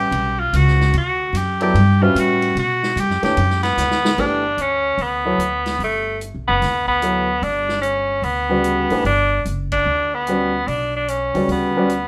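Hypnotic and spiritual, this modal jazz fragment cut from a longer piece swings at 148 BPM in 4/4 over a Gmaj7 in G lydian, with a bright, punchy, up-front tenor saxophone soloing with vibrato through the first 4.2 seconds, a grand piano of long sustain comping beneath it, a woody pizzicato upright bass on gut strings, and a vintage drum kit with dark cymbals and a tight kick that plays a fill at 3.8 seconds before the band hits an accent at 9.7 seconds, all set in moderate studio reverb.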